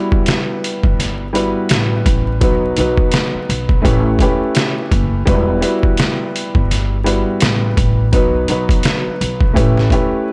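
Swung sixteenths at 84 BPM in 4/4 carry this reflective, tough boom-bap hip-hop fragment in E harmonic minor, where a gritty, compressed, pitched-down sampler-style drum kit with a thumpy kick and medium-tuned snare sits up front beside a dark, mellow concert grand piano that cycles Emadd9, B and A7 through cassette-tape coloring and filtering with audible action noise, while a woody pizzicato upright bass enters at 0.8 seconds and vinyl crackle fills a small room.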